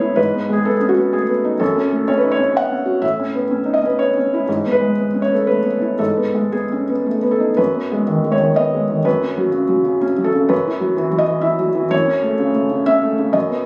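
A rubato pulse in 3/4 drifts between 109 and 130 BPM in this reflective, melancholic neoclassical minimalist piano piece, cut from a longer work and tuned to A4 = 439 Hz. A solo felt-muted upright piano, soft, natural and intimate with audible action noise, plays up front from F#2 to F#5, moving from G#m through F#m and Aadd9 before the harmony settles over an F# bass from 7.6 seconds and closes on F#m at 11.9 seconds. The room carries a moderate studio ambience, and the recording was captured on a phone in the room, with studio reverb and compression applied.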